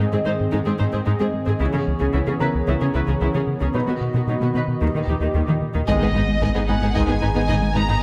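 A straight 4/4 pulse at 112 BPM drives this brooding, futuristic cinematic cue in G# minor, a hybrid orchestral and electronic film-score passage cut from a longer piece. A rubbery square-wave bass riff, a hollow chorused pad, a lush cello section, expressive viola with portamento and a clear background grand piano trailing tape echo build up over the opening bars. At 5.9 seconds the music lands on G#m: a smooth symphonic violin melody and a background studio violin second line enter, with brief sustained chords from mellow French horns and vintage-toned trombones, a woody double bass section, a thick saturated sub bass and a very quiet taiko ensemble with heavy sticks, all in moderate scoring-stage reverb.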